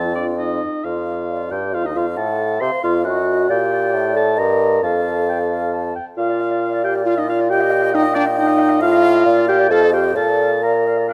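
In a brisk, straight triple metre, this lively, cheerful classical-period movement for wind quintet is cut from a longer piece and moves through bright major-key harmonies in a moderately reverberant recital hall. An airy, hollow flute with vibrato carries the melody from the background, while a vintage-toned oboe adds a second line and a soft, distant clarinet fills in the accompaniment. A close-miked French horn sits prominently in the texture, and a clear bassoon anchors the bass up front.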